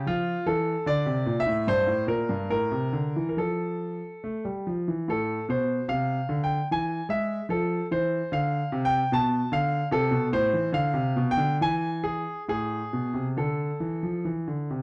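Classical, baroque-style suite movement in 3/4 for solo grand piano, moving with an introspective, grave rubato at 66-76 BPM and turning from D minor to A minor at 5.1 s. The concert grand sits up front with a clear, smooth tone, a deep bass and a vintage character, spanning G2 to A5 through chords such as Gmadd11, E and Bdim before a brief chordless passage and a close on A minor. Light reverb and a dark, warm production frame this short fragment of a longer piece.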